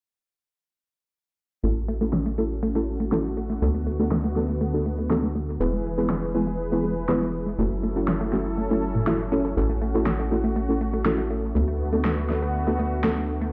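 A straight 4/4 pulse at 121 BPM drives this hopeful, euphoric progressive house passage in A major, cut from a longer piece. At 1.6 seconds a smooth, detuned analog pad, a glassy wavetable pluck playing arpeggios, deep mellow chord stabs and a tight sequencer bass all enter together, cycling through A6, D6, E and F#m7. The sawtooth-and-square bass sits up front, punchy and dark with tube saturation, while the crystalline pluck carries chorus, cassette tape character and dub echo under a filter sweep. The soft, warbling, vintage-toned stabs share that dub echo and chorus and sit slightly louder than the pad and pluck. An electronic snare joins at 2.1 seconds, fat, layered and overdriven, up front and low-pass filtered, with its own filter sweep running throughout. The whole mix sounds as if played on a big sound system in a bare stone room, with a light reverb around it.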